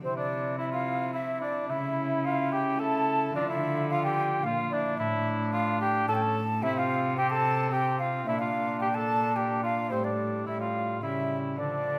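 From the first moment, an airy, close-miked flute with vibrato and a crisp attack carries the melody of this rustic, solemn Renaissance-style consort dance in 3/4 at 109 BPM. A warm cor anglais with light vibrato sits up front on a second line, while a brilliant, punchy trombone sounds distant and roomy in the accompaniment alongside a bright, ringing, fingerpicked harp. A single bowed cello with a rich, reedy gut-string tone holds the bass, and moderate recital hall reverb surrounds the ensemble through this 12-second passage cut from a longer piece.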